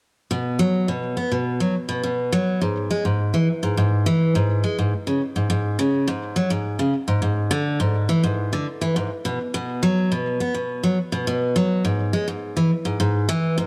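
This folktronica excerpt moves at 104 BPM in a straight 4/4, set in B dorian with a tuning of A4 = 439 Hz, and carries a wistful, autumnal mood. A single picked steel-string acoustic guitar carries the whole excerpt as a solo, playing from 0.3 to 13.7 seconds in a low register spanning G#2 to B3. The dreadnought guitar sounds bright and full-bodied with fresh strings, and it sits up front in the mix. Around the instrument, a light reverb and a dark, warm production soften the overall picture. The opening passage gives way to a new section at 9.5 seconds, and the recording cuts off as part of a longer piece.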